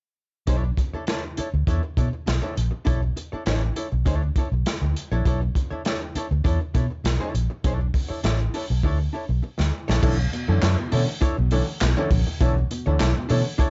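Funk at 100 BPM in 4/4 with a straight feel, this short cut from a longer piece sits in B minor and carries a sly, hypnotic mood over a Bm11 chord. A crunchy breakbeat kit drives it from 0.5 seconds, saturated and gritty with a tight kick, a medium-tuned snare, dark cymbals, hi-hat, handclaps and crash, sitting mid-forward and up front. Beneath it, a vintage foam-muted fingered electric bass runs from A1 to B2, round and punchy, the loudest part in the mix. A clean, compressed hollow-body archtop guitar, miked through an amp and picked, adds dark accompaniment between D4 and C#5 at a lower level. After a drum fill from 8.8 to 10.0 seconds, a woody upright piano enters with intimate stabs from B2 to C#4, its action noise audible. The dry sound, with little reverb and a rolled-off top, keeps the groove close and dusky.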